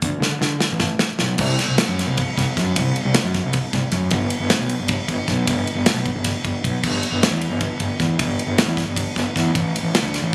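Recorded on a phone in a compressed, club-like room with a light reverb, this bright, wistful math rock and Midwest emo fragment in 7/8, cut from a longer piece, opens with a drum fill from 0.2 to 1.4 seconds on an airy, polished acoustic kit with a punchy kick, medium-tuned snare, hi-hat, ride and crash, while a round, overdriven fuzz bass played with the fingers sits up front alongside it throughout.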